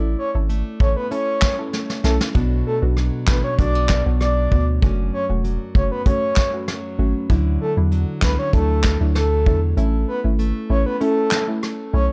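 A sultry, bouncy dancehall groove in straight 4/4 is carried by a vintage brush drum kit with handclaps, hi-hat, punchy kick, rim click and a medium-tuned snare, its rolled-off top roughened by 12-bit sampler grit; the drums enter at 0.5 seconds, play a fill from 1.7 to 2.4 seconds, and drop the kick from 9.8 seconds onward. Underneath, a deep sine sub bass with a pitch-drop attack sits up front alongside the drums. A fingerpicked nylon-string guitar with fresh strings and audible finger squeak spins full-bodied arpeggios, while a soft, round pluck with a wave-folded, decaying tone and chorus fills out the accompaniment. Above them, a breathy, flute-like synth lead with vibrato, chorus and delay carries the melody from 0.2 seconds. The chords move from A through Bm, F#m and Dadd9 before returning to A, and the dark production has very little reverb in this excerpt cut from a longer piece.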